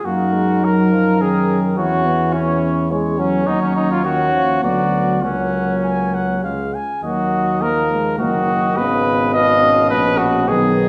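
Heroic and solemn, this short excerpt from a longer classical brass quintet piece moves at 104 BPM in 3/4 with a rubato feel, centred in F# major. A clear trumpet carries the melody, while a second trumpet with a warmer tone sits up front on the second line. Beneath them, a clear-toned euphonium and a mellow French horn in the background provide accompaniment. A tuba anchors the bass with a light vibrato and a distant, roomy sound. The harmony travels from F# through D#m9, Bm/D and C# before settling on G#m, all within a wet recital hall reverb.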